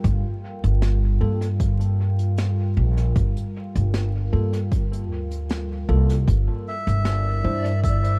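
This ambient dub excerpt opens with a deep, detuned pad holding a Gm7 chord under a woody pizzicato upright bass and a punchy electronic kick placed up front. A dark, smooth brush kit plays hi-hat and snare through dub echo. The tempo sits at 77 BPM in 4/4 with a slight swing on the sixteenths in G dorian, and vinyl crackle and small room ambience surround the sound. From 1.2 s a worn, slightly out-of-tune tine electric piano adds stabs, also sent through dub echo. Near the close the harmony moves to Cadd9/G, a reedy, breathy melodica sounds a single E5 from 6.7 s with its own echo, and a reversed, swelling granular texture enters faintly in the background at 7.1 s. The mood is spacious and deep, and the passage is cut from a longer piece.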